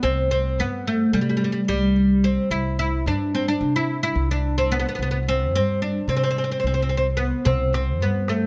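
In a straight-felt 9/8, this passionate, warm excerpt from a Turkish makam ensemble puts a mellow, fretless oud up front, its plectrum-plucked double strings deep and woody, with tape echo as it carries the melody. Beneath it an upright bass plays pizzicato on dark, thumpy steel strings, and a clay-shell darbuka with natural skin enters in the background at 7.5 seconds. The sound is close, detailed and dry, with little reverb.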